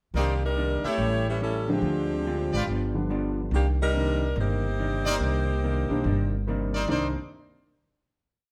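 Sultry and brassy, this short, complete big band swing piece moves at 142 BPM in 4/4 with a swung feel in C minor, tuned slightly sharp to A4 = 445 Hz. A warm saxophone section carries the motif-based melody in tight four-part block voicing with vibrato, sitting up front from 0.2 to 6.4 seconds. A brilliant trumpet section punches in with syncopated stabs in close voicings and light vibrato, while an upright bass, woody and pizzicato on steel strings, holds a two-feel line up front. A dark, clean hollow-body electric guitar strums jazz chord shapes four to the bar in the background, and a clear concert grand piano joins at 1.7 seconds with syncopated comping in rootless voicings. The harmony runs from Cm9 through A7, Dm7b5 and G7 back to Cm9, landing on a final chord at 6.9 seconds, all in a light reverb.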